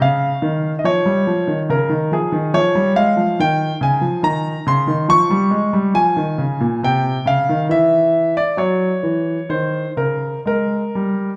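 In a slow, rubato triple metre, a solo concert grand piano plays this solemn, grave baroque-style suite movement, a brief passage cut from a longer piece that runs to 11.3 seconds. The instrument sounds natural and up front, with a warm tone and a deep bass. A reverberant recital-hall acoustic wraps around it, lending the grave harmonies a churchly spaciousness.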